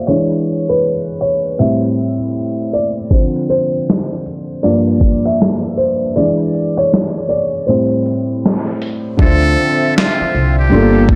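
A soft, intimate felt-muted upright piano with audible action noise opens this reflective, melancholic lo-fi hip hop excerpt, cycling through seventh chords beneath a filter sweep, before a gritty, compressed sampler-style drum kit of finger snaps, hi-hat, thumpy kick and snare arrives at 3.1 seconds with a swung 4/4 feel. The kick drops out at 6.2 seconds, and at 9.2 seconds the hi-hats fall away as a buzzy, breathy muted trumpet takes the melody over a lush, detuned sawtooth pad with chorus and a woody pizzicato upright bass with transformer saturation. The recording has a dry, low-pass filtered small-room sound.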